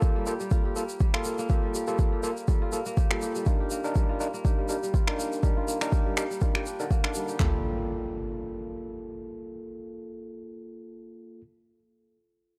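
Spiritual and warm, this afro house cut at 122 BPM in G minor pairs crisp, fingerpicked kora arpeggios, shaped by a filter sweep and tape echo, with up-front stabs from an overdriven tine electric piano through a combo amp, both pumping with sidechain over Gm9 and Ebmaj9 chords. A layered deep house kit with a deep kick, handclaps and toms drives the groove alongside electronic finger snaps, both re-recorded in a small room, and a grainy, close tube shaker, with the drums stopping at 7.5 seconds. An electronic impact lands at 7.4 seconds, and the electric piano rings on until 11.4 seconds in a dry, gritty digital ambience.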